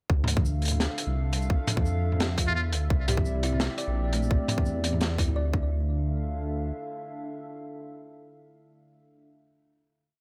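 A close, small-room sound frames this tense, dark half-time drum and bass piece at 171 BPM in D minor, where a tight, layered electronic kick and a gritty, rolled-off breakbeat kit with high-tuned snare, low tom, shaker and closed hat drive a sparse beat under a rumbling, tube-saturated detuned saw bass and a moody, chorused analog pad with sidechain pumping, while a buzzy metal-muted trumpet flickers briefly with delay at 2.5 seconds, a woody kalimba loops a 12-step sequence with 12-bit sampler grit from 3.1 seconds, and the pad sustains through the final hit that begins at 5.7 seconds.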